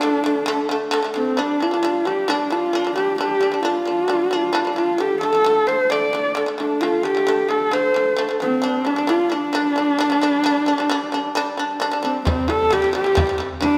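A moderate stage reverb opens up this vast, windswept cut from a longer Mongolian folk piece, where a husky, woody horsehead fiddle carries the melody with vibrato and gliding portamento over bright, buzzing plucked shamisen arpeggios, both up front, until a close, dry frame drum joins at 12.3 seconds.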